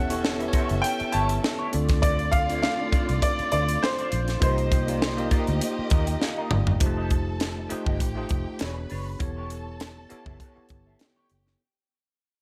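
Cinematic and bittersweet, this excerpt of lush 1970s-style soul moves at 100 BPM with a light sixteenth-note swing, as a clear, worn grand piano with tape echo carries the melody until 6.2 s over distant, expressive strings with vibrato and portamento, bell-like tine electric piano accompaniment, a round foam-muted fingered bass, a twangy, slightly broken-up guitar riff with wah and spring reverb tucked in the background, and a tight, up-front funk drum kit with a high-tuned snare, before an electric piano fill and a drum fill lead into a fade-out from 6.8 s over chords moving from A7/E through Dm7, Cm11, F9 and E13.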